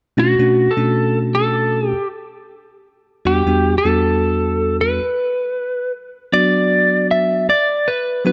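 Mournful and brooding, this short cut from a longer blues piece moves at a slow 78 BPM in 4/4 in B minor, with a gentle swing on the sixteenth notes. A lightly driven electric lead guitar carries the melody from 0.2 s, its dark, slightly broken-up tone picked and compressed and sitting up front in the mix. Beneath it, a tine electric piano plays the accompaniment in a lower register, its sound bell-like, bright, clean and direct, also placed close to the listener. The harmony moves from Bm7 to Em7 at 3.3 s, and a new section begins at 6.3 s, settling on a plain B minor chord. A moderate plate reverb gives the pair a lingering, spacious tail.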